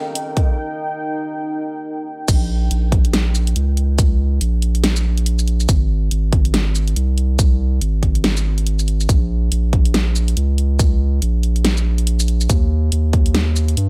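This deep dubstep fragment opens on a moody, detuned sawtooth pad drenched in chorus and its own reverb, with a filter sweep over an Eb chord, while a thick, saturated sine sub bass sits up front beneath it. The kick and the electronic dubstep kit of crash, hi-hat, shaker and snare slip in during this brief, meditative build-up and break, and the pad ends at 2.2 seconds. At 2.3 seconds the drop arrives, and the piece turns heavy in a half-time feel at 141 BPM, in 4/4 with a 16th-note swing, in Bb dorian. The punchy, up-front kick and the huge, layered snare drive the groove, and the sustained low bass carries the changes from Bb minor to Ab and back to Bb minor before the harmony falls away. The mix is dry, with little room reverb around the drums and bass.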